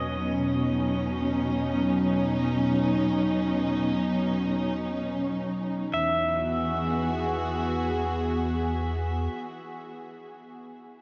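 A dark studio string section sits up front in this ambient excerpt in free time and E major, bowing sustained chords sul tasto with light vibrato, a soft attack and a smooth, intimate top that lasts the full ten seconds. Over it, an electric pedal steel guitar carries a clean, compressed melody between D#5 and E5, played with fingerpicks and slide, its volume swells trailing through an analog delay until 9.4 seconds. Beneath both, a round sine sub bass holds a deep, mellow E2 with a fast attack and long sustain. The harmony rests on B over E before settling onto a plain E chord at 5.9 seconds. A huge ambient reverb with a 7.5-second tail soaks the dreamy mix, giving the piece a luminous, warm glow.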